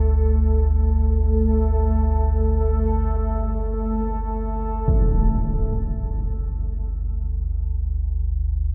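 Cavernous and dark, this dark ambient drone in free time, cut from a longer piece, rests on a G5 chord, with a deep, ominous, rumbling drone of detuned, warbling sawtooth and triangle tones up front while a resonant, bubbling sawtooth texture of random filter steps shimmers with chorus until 4.9 seconds, when a huge, bright, low-pass filtered impact lands and the vintage drone then carries on alone through the wet cathedral reverb until 8.7 seconds.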